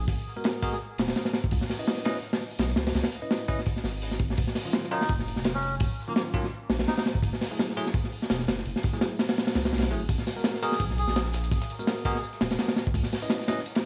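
A crunchy breakbeat kit sits up front in this dark, raw jungle excerpt at 168 BPM in G# minor. Its punchy kick, medium-tuned snare and hi-hat sound saturated and gritty with a rolled-off top, lightly swung on the sixteenths. Beneath it, a deep, thick sine sub bass with tube saturation holds the low end with fast-attack, sustained notes. A bell-like tine electric piano plays bright, clean stabs through dub echo over chords moving from G#m9 through C#m9, D#m9 and F#m9. A reedy, breathy melodica with a nasal, boxy character carries the melody in brief phrases, also fed into dub echo. From 10.1 seconds, a very quiet, dusty sampler-style soul kit adds compressed hi-hat, snare and tambourine that sound re-recorded in a large room, while a small room ambience surrounds the mix.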